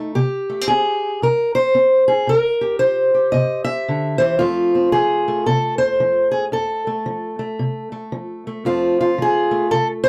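Set in a swung 4/4 at 113 BPM, this short cut from a longer piece is acoustic country blues in F major with a rollicking yet laid-back mood. A lone fingerpicked steel-string acoustic guitar carries everything from 0.0 to 10.1 seconds, ranging from F2 up to E5. Its tone is dark and boxy, with a parlour-guitar character, and it sits up front in the mix. The harmony moves from C7 at 0.2 seconds to F at 4.4 seconds before a repeat of the opening section begins at 8.7 seconds. The sound is dry and close, in the manner of a 1970s studio recording, with a moderate booth ambience.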